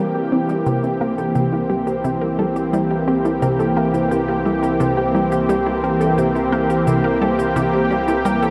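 A thick, warbling unison pad sits up front, its chorus-treated chords sustained over a C7 in this expansive, cosmic stretch of ambient, sequencer-driven space music at 87 BPM. Behind it, a punchy, detuned unison pluck spins delayed arpeggios, and a squelchy, resonant blip pluck plays a bright riff through phaser and delay, while a round, deep analog bass fades in beneath. A woodblock and shaker, re-recorded in a small room and treated with delay, fade in from 0.3 s, and a huge ambient reverb with a 9.0 s tail soaks the dreamy mix.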